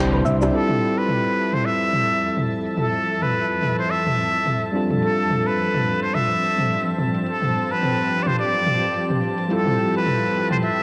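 Relaxed and blissful, this short sunset chillout clip, cut from a longer piece, sets a breathy, nasal muted trumpet up front over bright tine electric piano, a shimmering, ethereal ambient pad with a filter sweep, a layered deep house drum kit, and a faint glassy harmonics texture entering at 1.5 seconds, while a woody upright bass, a soft round pluck and tight bongos appear only in the opening half second, all recorded on cassette and steeped in spring reverb.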